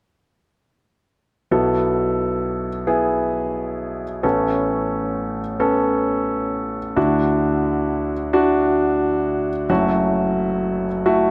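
Pop in an uplifting, warm mood, this short excerpt centres on a concert grand piano playing accompaniment from 1.5 to 11.3 seconds, moving through B7sus4, Aadd9, Dadd9 and F#m7. The piano sits up front with an intimate, polished character, deep bass, long sustain and audible action noise. A moderate plate reverb adds a generous tail to the sound.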